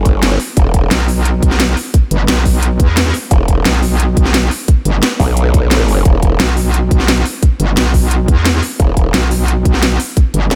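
A straight 4/4 pulse at 175 BPM drives this dark, futuristic slice of technical drum and bass in E minor, cut from a longer piece. A tight, layered electronic kick sits up front from 0.1 seconds, alongside a drum kit with a cracking snare and crisp hi-hats that carries a small-room character. Two aggressive basses share the low end: a growling, formant-filtered growl bass in the E1 to B1 range appears in bursts, while a metallic, FM-tinged wobble bass from G1 to E2 enters at 0.9 seconds and holds on through nearly the whole passage. Both basses are saturated through tube warmth, compressed, bright and thickened with chorus, their fast attacks and sustained wobbling tones pushed to the front. Light reverb frames the dense, dark mix.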